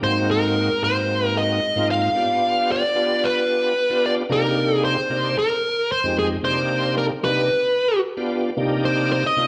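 A lightly swung 4/4 pulse at 112 BPM drives this brooding, mournful blues in C minor, a short passage cut from a longer piece. A dark, smooth electric lead guitar carries the melody, picked and overdriven, sitting up front in the upper register. Beside it, a full, shouting tonewheel organ supplies the accompaniment, its bright tone colored by light overdrive, chorus vibrato and a slow rotary speaker. Both parts play together from 0.0 to 9.5 seconds, moving through Ab7 and G7 before settling into a minor progression of Cm9, Fm9, Cm9 and G7 that resolves on Cm9 at 8.6 seconds. The duo sounds like a band playing live in one room, bathed in a large, wet studio reverb that lends the mournful mood a spacious tail.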